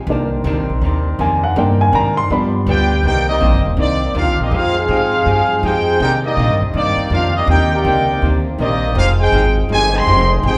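Set in a reverberant recital hall, this brassy, swinging jazz excerpt in C minor at 162 BPM opens with a woody upright piano, its action noise audible, taking a brief solo over a very quiet, tight trombone section, a dark hollow-body archtop guitar in the background and a pizzicato upright bass up front, until at 2.7 seconds a mellow, distant trumpet section takes the melody while a cup-muted trombone section adds a soft, veiled second line with light vibrato.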